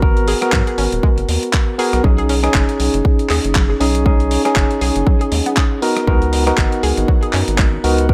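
A deep, late-night deep house excerpt at 119 BPM opens with a punchy, up-front electronic kick, a round, dark analog bass and clean tine electric piano stabs carrying medium tremolo, 12-bit sampler grit, tape echo and sidechain pumping over G#m9, B69 and C#13sus4, while a gritty, overdriven soul-sampler kit of handclaps, hi-hat and rim click enters at 0.2 seconds, a bright, chorused analog pluck arpeggiates in the background with digital delay from 0.3 seconds, and a reedy chamber string section hovers barely audible beneath it all in a digital ambience.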